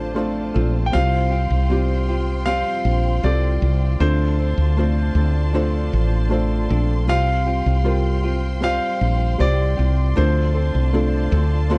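This tender, emotional pop ballad excerpt moves at 78 BPM in 4/4 over Dm7 and Csus4, with a brilliant, polished concert grand piano carrying the melody through tape echo, a soft, felt-muted upright piano with audible action noise supplying accompaniment, a lush, bowed string section holding smooth sustained chords with vibrato, a bright fingerpicked flamenco guitar playing arpeggios in the background, and a dark, round fretless electric bass sitting up front, all captured in a dry, close 1970s-style studio recording.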